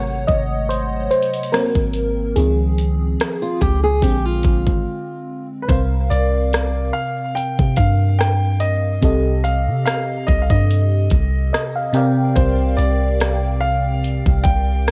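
A moody, sensual stretch of contemporary R&B in C minor at 72 BPM, cut from a longer piece, opens with a lush, dreamy FM electric piano layered over a soft pad, its detuned shimmer coloured by chorus and phaser, featured up front over a deep, round 808-style bass. A smooth, produced drum kit joins almost at once with a knocking kick, metallic hi-hats and rim clicks, carrying a cassette-tape grit and a small-room character and set to a gentle 16th-note swing. At 3.4 seconds a dark, fingerpicked acoustic archtop guitar adds brief arpeggios, finger squeaks audible, before a short break. From 5.6 seconds a clear, intimate grand piano carries the melody with long sustain and audible action noise, treated with analog delay and its own tape colour. The harmony drifts through rich extended chords such as Ab7b9, Dbmaj9 and Gm7/C, and the electric piano steps forward with a fill at 11.1 seconds before the passage settles on C9sus4, all within a digital ambience and a home-cassette sound.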